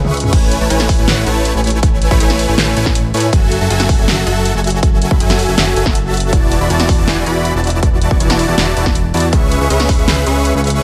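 A half-time 4/4 groove at 160 BPM opens with a brief drum fill, with a big-room dance kit of crash, hi-hat, toms and a huge snare playing throughout, before a punchy, layered electronic kick drives the bar from 0.3 to 10.0 seconds. This euphoric, bright future bass excerpt in A major, tuned to A4 = 442 Hz, is led by lush, detuned supersaw chords with a moving notch, sidechain pumping and tape echo, cycling through Amaj7, F#m7, E9sus4 and C#m7. Underneath, a fat sawtooth analog bass with a filter sweep pumps to the kick, and the sound stays dry and up front.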